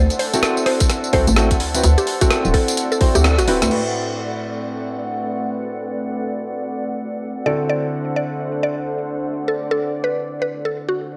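A swung two-step groove opens this moody, late-night UK garage excerpt: a compressed, pitched-up breakbeat kit of congas, hi-hat, rim click, tambourine and crash cymbal is joined by a tight, layered electronic kick, while a hollow, bouncy FM bass knocks underneath before the beat and bass fall away by 3.8 seconds. A woody, round mallet-like synth pluck carries the melody through chorus and analog delay and returns at 7.5 seconds, as an intimate concert grand piano with audible action noise plays stabs through tape echo. Behind them a smooth, warbling vintage analog pad and a cloudy, blurred granular pad hold sustained sounds with sidechain pumping, a filter sweeps over the piano and analog pad from 3.7 seconds, and the whole sits in a dry, gritty hardware recording.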